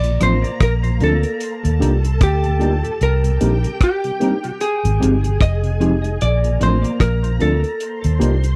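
A dark, clean hollow-body jazz guitar carries the melody in this short, tender lovers rock reggae excerpt, its picked lines coloured by tape echo over a relaxed, swung 4/4 groove. Up front, a round, foam-muted fingered electric bass and a dry, tight 70s drum kit of hi-hat, kick drum and rim click set a steady, intimate pulse. A silky string machine with slow attack and ensemble chorus adds a soft second line. A mellow tine electric piano with slapback echo and a clean, fingered electric guitar playing phaser-tinged stabs fill the middle, while a tonewheel organ with key click and a slow rotary speaker sits in the background. The chords drift through Bbmaj7, Ebmaj7, Cm7 and Fm7 in a close, dry 1970s-style studio sound that feels romantic and unhurried.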